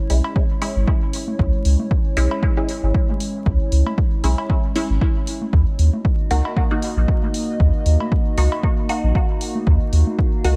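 Dub techno with a hypnotic, nocturnal mood, cut from a longer piece, where a round, deep sub bass and a punchy, overdriven kick sit up front, a dark, detuned analog pad holds sustained chords with chorus, phaser and sidechain pumping, a muted, resonant chord stab carries 12-bit sampler grit and dub echo, and an overdriven electronic hi-hat and tape-tinged cowbell and congas with their own dub echo fill out a dry, dusky mix flecked with vinyl crackle as the harmony moves from C#m to D#m at 5.5 s.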